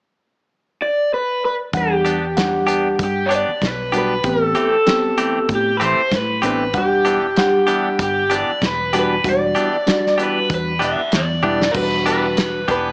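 A raw, overdriven garage guitar carries the melody up front from 0.8 seconds in this smoky, soulful excerpt of straight-eighth soul blues in E minor at 96 BPM, joined at 1.7 seconds by a gritty, barky reed electric piano, a dark, foam-muted fingered bass and a mid-forward soul drum kit with a tight kick, and at 2.0 seconds by twangy, bright clean guitar stabs with spring reverb, all moving between Em7 and Am7 with a drum fill at 11.4 seconds, heard through a small speaker in a small room.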